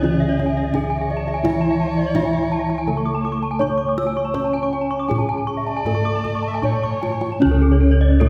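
A straight 4/4 pulse at 76-85 BPM carries this shimmering, brilliant Balinese gamelan passage in C# pelog, cut from a longer piece, with the kendang tapped by soft hands until a drum fill at 6.8 seconds. A wooden-mallet bronze metallophone leads the melody over a dark, padded lower metallophone and round, mellow bossed gongs in the bass, while two bright horn-mallet metallophones spin arpeggios above, their paired tuning producing beating shimmer. A bowed erhu adds an expressive second line with vibrato and portamento until 7.3 seconds, and the ensemble is heard from further back in a reverberant concert hall.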